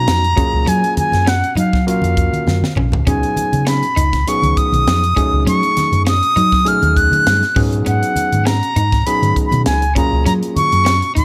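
A lightly swung sixteenth-note groove from a crisp fusion kit, with its high-tuned snare and punchy kick and a drum fill at 2.3 seconds, drives this bright, funky electric jazz fusion excerpt alongside a dark, round hollow-body electric bass, with low-tuned congas joining in the background. Up front, a pure, reedy silver concert flute with vibrato and a soft attack carries the melody, while a barky, gritty tine electric piano played through a combo amp supplies the chords. A slightly broken-up, compressed electric guitar with analog chorus adds picked stabs from 0.4 seconds, moving through lush major-ninth, suspended and minor-sixth harmonies in a small room.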